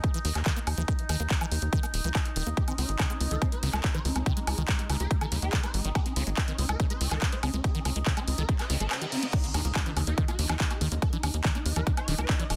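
A resonant sawtooth drone with moving overtones, ring-modulated shimmer and chorus sits in the background from the start, its sustained chords pumping against a punchy, up-front electronic kick and a layered big-room kit of crash, handclaps, hi-hat and woodblock in this hypnotic, intense psychedelic trance excerpt. Beneath them, a tight, driving sequencer bass with a filter pluck and tube saturation carries the low end, while a squelchy, liquid acid bass riff with a resonant filter sweep, phaser and tape echo bubbles further back. At 2.6 seconds a swarming, aggressive rave lead enters, its detuned unison sawtooth and pulse-width-modulated tone topped with a pitch-rise attack, a moving notch, chorus, phaser and digital delay. A very quiet reverse cymbal rises from 8.6 seconds as the kick briefly drops out, and at 9.3 seconds the drop lands with a soft electronic impact. The dense, heavily limited master keeps the full arrangement pressed tight and loud until the cut.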